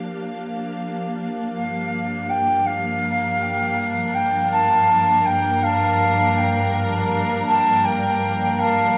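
Floating in free time, this short ambient passage, cut from a longer piece, feels spacious and hazy, tuned to A4 = 442 Hz. A rich studio string section sits up front from the start, its bowed ensemble sound smooth and even with a light vibrato, and it fades in across the full 9.0 seconds while holding sustained chords from Gm7 to Bb/G. At 1.6 seconds a mellow wooden flute enters with the melody, staying high between F5 and A5 and sounding airy, with a straight tone, soft attack and rolled-off highs. A dub echo trails the flute, and it sits noticeably louder than the strings. Moderate spring reverb and studio ambience surround the echo-heavy mix, giving the piece a drifting, suspended atmosphere.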